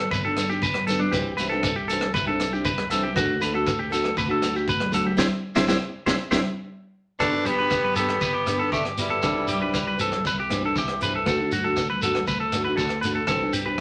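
A joyful, carefree highlife guitar band excerpt opens with a twangy, up-front clean electric guitar playing arpeggios over fingerpicked nylon-string guitar, a round, punchy fingered electric bass, a gritty breakbeat drum kit with a high-tuned snare, a grainy shekere and ringing congas in the background, before a band accent leads at 7.2 seconds to a raspy, bright tenor saxophone melody joined by a breathy, dark trumpet second line until 10.0 seconds, all set in a wet studio reverb.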